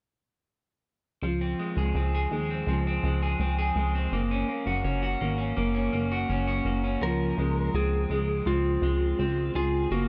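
A straight 4/4 dream pop pulse at 83 BPM in Db major carries this ethereal, dreamy excerpt, where a dark, slightly broken-up electric guitar picks arpeggios through lush chorus and tape echo over a punchy, plucky analog bass with a fast-attack filter pluck, both up front from 1.2 seconds, as the chords move from Dbmaj7 to Gb and back before a compressed slide guitar enters at 7.0 seconds with a fingered, tape-echoed melody, all set in a huge ambient reverb with a soft, rolled-off top.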